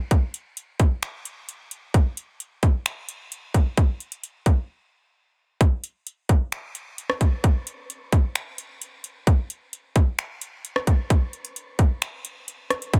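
A half-time groove in 4/4 drives this short hip hop fragment, carried entirely by an electronic trap drum kit that sits up front with a hard-clipped kick, metallic hi-hats, finger snaps and rim clicks, plus soft clipping on the snare. The kit was re-recorded in a small room, yet the overall sound stays dry, dense and heavily limited, and the mood is spacious and hazy. After a brief break from 4.7 to 5.6 seconds, the pattern moves into a new section that runs to the end at 13.0 seconds.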